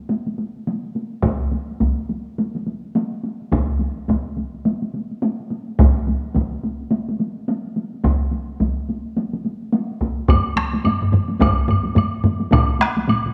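Japanese traditional taiko drum ensemble music with a driving, ceremonial mood, swung in 4/4 and speeding up throughout this short cut from a longer piece. A compressed, saturated taiko group struck with hard sticks opens at 0.1 s. A close, dry second taiko group, also on hard sticks, joins at 1.2 s. At 10.3 s a heavy-stick taiko group in a small room and a woody woodblock enter for the closing section, followed by a brief heavy-stick taiko burst in a live room near the end. The drums sit up front in a studio setting bathed in wet echo-chamber reverb.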